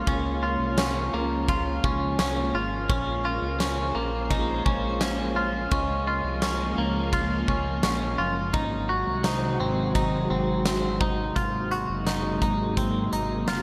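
Bright, twangy clean electric guitar arpeggios sit up front, washed in subtle chorus and digital delay, over silky, warbling string-machine chords with ensemble chorus and a fat, detuned analog sawtooth bass in this dreamy, blissful dream pop excerpt. A huge arena drum kit with a punchy kick, fat snare, bright cymbals and tambourine enters at 0.1 s, while a metallic, ringing vibraphone with fast motor vibrato and delay shimmers in the background until 11.7 s. The bright 1980s-style digital sound sits in a lush hall reverb as the harmony moves through Db6, Bbm9 and Ab7 before shifting to Ab9 at 11.4 s.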